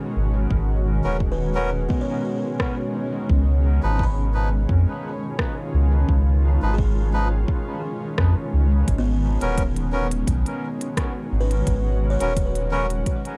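A lightly swung 86 BPM 4/4 pulse carries this deep, meditative ambient dub fragment in G# dorian, where a round, up-front sub bass with tube saturation and a tape-warm electronic kick anchor a blurred, evolving granular pad, while buzzing, woody kalimba arpeggios pass through a low-pass filter and dub echo, reedy, breathy melodica stabs trail their own dub echo from 1.0 s, and crisp hi-hats and rim clicks from an organic electronic kit join at 2.6 s, set within a dark, dry production that moves from G#m11 to C#9 and back.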